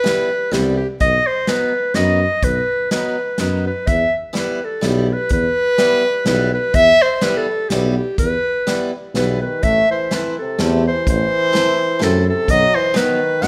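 A swung three-beat lilt drives this bouncy, festive alpine folk dance-band excerpt, where a clear, close-miked clarinet carries the melody up front over boxy, picked swing guitar with fresh strings, a loose small-room drum kit with a tight kick and rolled-off top, and a mellow, smooth-topped tuba bass from 0.5 s, while a distant, roomy euphonium with light vibrato joins as a second line at 9.2 s, inside a moderate recital-hall reverb.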